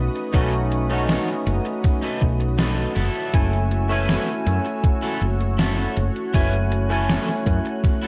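A growly, round fretless bass sits up front in this nostalgic, melancholic vaporwave excerpt at 80 BPM in F# dorian, moving from B7 to F#m7 at 3.0 seconds beneath a barky, bright tine electric piano colored by analog chorus, tape echo and 12-bit sampler grit. An overdriven, thumpy electronic kick and an 80s drum machine's hi-hat and gated-reverb snare share the same gritty sampler character, while a twangy, slightly broken-up guitar riff with chorus and tape echo enters at 0.3 seconds. Behind them a lush, warbling detuned sawtooth pad holds sustained chords in the background, all within light digital ambience and a cassette-tape sheen.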